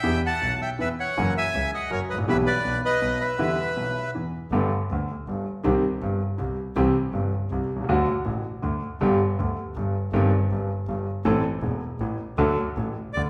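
A reedy, bright bandoneon carries the melody up front in this passionate, tense tango, cut from a longer piece. It falls silent at 4.1 seconds and returns only for a brief moment at 13.1 seconds. Underneath, a concert grand piano supplies a smooth accompaniment with a deep, vintage bass, and a single bowed double bass adds a biting, earthy line with light vibrato and an airy bow, heard close. The music moves in 3/4 at 160 BPM with a rubato feel, opening in E minor, pausing in a short break, and turning to G major at 4.5 seconds. The trio plays live together in one room, wrapped in a wet, large studio reverb.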